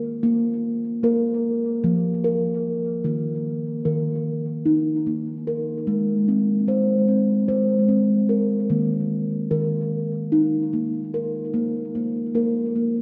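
A solo steel tongue drum, round, pure and ringing under rubber mallets, sits up front from 0.0 to 13.0 s with tape echo and a boxy small-room character, spanning Eb3 to C5 in a gentle, hypnotic world meditative piece at 148 BPM in 7/8 with a straight feel, all soaked in a dreamy, wet plate reverb in this short cut from a longer work.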